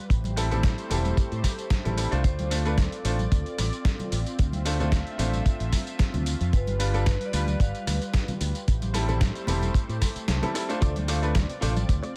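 A dry, tight kick drum sits up front in this cosmic, groovy nu-disco excerpt at 112 BPM in D dorian with a light swing, dropping out briefly at 10.3 seconds, while a punchy fingered electric bass with an envelope filter drives alongside a gritty, overdriven soul sampler-style kit and damped congas in the background. A brilliant, worn grand piano with tape echo and a lush, detuned sawtooth pad both pump against the sidechain, and the pad also carries chorus and phaser, as a ringing vibraphone with slow motor vibrato and 12-bit sampler grit carries the melody from 2.2 to 8.1 seconds over Dm7 and G7 chords. At 10.8 seconds a very quiet unison pluck arpeggio and a twangy, clean direct guitar riff with ensemble chorus and tape echo join, all set in a small room ambience.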